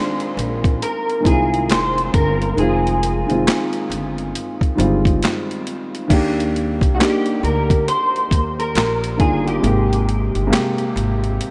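Lo-fi hip hop at a slow 68 BPM in 4/4, with 63% swing on the sixteenths, this reflective, melancholic passage is cut from a longer piece and sits in F dorian, tuned to A4 = 437 Hz. A dark, mellow upright piano sits up front, its vintage cassette-tape coloring and audible action noise lending intimacy. A fingered electric guitar at the edge of break-up carries the melody through ensemble chorus, analog delay and a low-pass filter. The boom bap sampler-style kit enters at 0.2 s, gritty and pitched down, pairing a thumpy kick with a high-tuned snare, hi-hat, handclaps and crash cymbal, also placed up front. A woody pizzicato upright bass on gut strings joins at 0.4 s to anchor the low end. The harmony moves from Fm7 to Ebmaj7 at 6.1 s and on to Abmaj9, all within a dreamy mix soaked in a cathedral reverb with an RT60 of 6.0 s.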